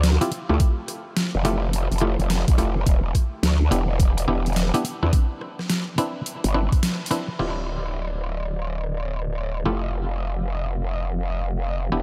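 A swung 16th-note groove at 106 BPM in 4/4 drives this funky, playful glitch hop excerpt, built on an overdriven, knocking electronic kick and a dubstep kit of deep snare, bright low-passed hats, rim clicks and crashes; both fall away after a band accent at 6.8 seconds, the kit's last hits ending by 7.5 seconds. Up front, an aggressive, saturated growl bass with a wobbling formant edge and chorus holds the low end, while a muted, stringy clav heard through a combo amp adds percussive, sidechain-pumped stabs that trail into a diffuse ambient delay. The chords move from Dm11 through Fmaj9, Em7 and Cmaj9, returning to Dm11 and Fmaj9 in a drumless closing stretch, set in light digital ambience.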